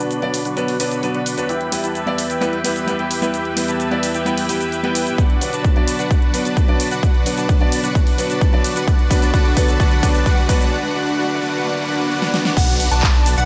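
A straight 4/4 pulse at 130 BPM drives this euphoric, anthemic festival progressive house build-up in B minor, where a huge, thick supersaw riff with vintage 12-bit sampler grit, sidechain pumping and a filter sweep sits up front over a clear, worn grand piano, dark, floating bowed strings in the background and a big-room kit of cabasa, crash cymbal, handclaps, hi-hat and a huge snare, with a punchy layered kick joining at 5.2 s, a very quiet riser and downlifter hovering near a break at 10.7 s, and a catchy plucky unison lead arpeggio and a menacing, beating detuned saw bass arriving at 12.6 s just as the piece is cut off.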